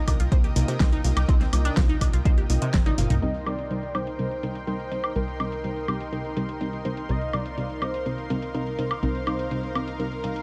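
Dreamy and expansive, this progressive house excerpt moves at 124 BPM in C minor over a Cm7 chord, with an airy supersaw pad, punchy detuned unison-pluck stabs and a tight sawtooth sequencer bass all pumping to the sidechain throughout, while a crystalline wavetable pluck arpeggiates with chorus and digital delay before stopping at 3.2 seconds. A punchy, up-front electronic kick drives the opening until 2.8 seconds, alongside a tape-warm deep house kit with a fat snare, metallic low-passed hats, toms and woodblock, and a drum fill from 2.7 seconds leads into the entry of a velvety sawtooth lead melody with vibrato, portamento, chorus and dub echo. The dark, warm production is dry, with little reverb, and a filter sweep on the synth pluck runs from 3.2 seconds to the end.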